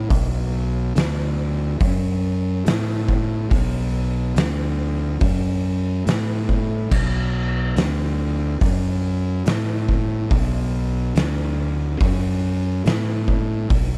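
A fuzz-drenched, fingered electric bass opens this short stoner and doom metal excerpt, sitting up front with a growly, overdriven tone as it moves between B1 and A2 in B minor. An oversized, low-tuned drum kit joins at 0.1 seconds and carries through to 13.9 seconds, its punchy kick, fat snare, hi-hat, dark cymbals and crash giving the groove its weight. The kit sounds saturated and gritty, captured in a bright stone room with a pumping quality, and it also sits close to the listener. At a slow 71 BPM in a straight 4/4, the two parts build an ominous, sludgy heaviness. The overall sound is dry and direct, with little reverb, and the instruments are tuned slightly below standard pitch, at A4 = 438 Hz.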